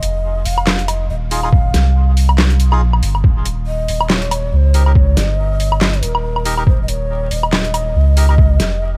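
Meditative and dark, this deep dubstep fragment at 140 BPM rolls in a swung half-time feel under vinyl crackle, with a breathy bamboo shakuhachi carrying the melody through dub echo over a round, up-front sub bass, while an overdriven kit of deep snare, bright hats, handclaps and woodblock sits in a small room, a muffled, thumpy kick joins at 1.5 seconds, and reedy, nasal melodica stabs echo from 1.3 seconds as the harmony moves from F7(no3) to Eb.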